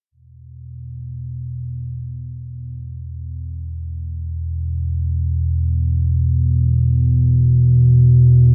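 In free time, this ominous, vast ambient excerpt features a lone deep rumbling drone, dark and warbling with a vintage sawtooth edge, that fades in at 0.6 s and sustains up front across its low E2 to B2 range, set in a cavernous cathedral reverb with a cassette-tape character.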